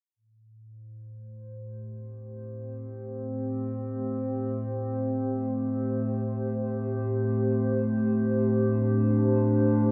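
Floating in free time with an unmeasured pulse, this ambient passage, cut from a longer piece, feels meditative and hazy. Its only voice is a warbling, tape-like pad that enters at 0.8 seconds and holds sustained chords spanning a low-to-middle register. Its tone is dark, detuned and lo-fi, with a slow attack and long release that give each chord a nostalgic, wavering glow, colored further by chorus and its own built-in reverb. The pad sits up front as it fades in across the whole span, settling onto a single held chord that never changes. A moderate echo-chamber reverb wraps the sound in a soft, lingering space that carries through to the close at 9.9 seconds.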